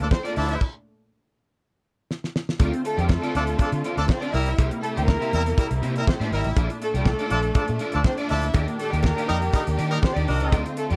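A straight 4/4 disco groove at 121 BPM in D minor, glamorous and danceable, rides on a damped, fat-snared 70s drum kit and a round, foam-muted vintage fingered electric bass up front, joined by loose horn section stabs, a slightly broken-up, twangy electric guitar with ensemble chorus, a lush bowed violin section second line, clear sustained string section chords in the background and a metallic cowbell, as the groove halts for a stop from 0.6 s before a drum fill from 2.1 s leads back in at 2.6 s, all with little reverb in this short cut from a longer piece.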